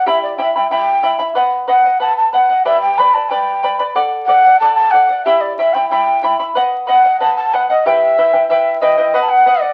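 A breathy, mellow cane quena carries the melody with a soft-attacked straight tone, up front over a shimmering, fingerpicked charango whose doubled strings accompany through an earthy, wistful Andean folk excerpt in E minor at 93 BPM in 2/4, moving through Em, B, G and D in moderate studio reverb on a very old 78 rpm record with vinyl crackle.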